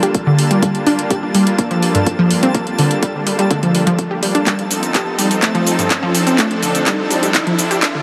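Lightly reverberant with a digital ambience, this dreamy, bittersweet progressive house excerpt in G minor at 125 BPM is a build-up with a filter sweep running throughout, moving from Gm7 to F7 at 4.5 seconds as a drum fill begins. An up-front, punchy unison pluck plays delayed arpeggios over a lush, detuned supersaw pad of sustained chords, both pumping with the sidechain, while a twinkling granular texture sparkles in the background and a round analog bass sits barely audible underneath. A tape-warm, small-room house kit of handclaps, hi-hat and shaker plays alongside a layered electronic kick drum, and a very quiet riser enters at 1.0 second.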